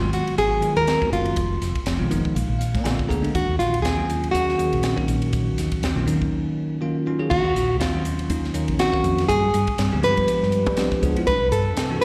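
A fingerpicked nylon-string guitar carries the melody up front in this funky, slick electric jazz fusion excerpt with a swung sixteenth feel, its classical tone touched by slapback echo. A bell-like tine electric piano, colored by phaser and slapback echo, accompanies and adds a fill from 1.9 to 3.3 seconds, while a round, dark fingered electric bass holds the low end. A crisp fusion kit with a high-tuned snare and punchy kick enters at 0.1 seconds, and the band is heard as a live gig through the venue's PA in recital-hall reverb.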